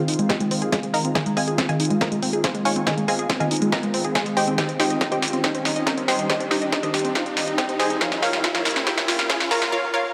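A detuned sawtooth unison pluck carries the melody in this driving, emotional uplifting trance excerpt at 140 BPM in 4/4, its punchy, fast-attack tone layered with noise and sine, treated with digital delay and sidechain pumping and shaped by a filter sweep. Beneath it, a round, mellow analog pluck spins arpeggios through chorus and delay, pumping in time. A shimmering, ethereal pad holds sustained chords over Fm7, Cm and Bbm, its slow attack, octave-up granular sheen and dark undertone softened by chorus and its own reverb. The whole passage works as a build-up: a dry, up-front analog drum machine plays a fill on snare and hi-hat, while an overdriven electronic kick sits in the background and a riser enters at 2.0 seconds. A moderate, lush hall reverb of about 2.1 seconds gives the mix its space, and the passage is cut from a longer piece.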